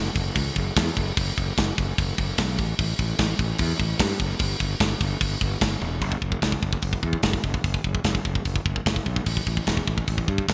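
A bright, 1980s-style digital production with light reverb frames this short heavy metal excerpt, cut from a longer piece. The mood is heavy and epic, in F# phrygian at 148 BPM in a straight 4/4. A fuzz-driven fingered electric bass opens at 0.0 seconds, its overdriven, growly tone sitting punchy and up front in the low register. A tight metal drum kit joins at 0.2 seconds, with a medium-tuned snare, tight kick, toms, hi-hat and bright crash cymbals, all carrying gated reverb and a mid-forward studio-room presence. A drum fill at 5.8 seconds carries the music into a new section at 6.0 seconds, which runs to the end.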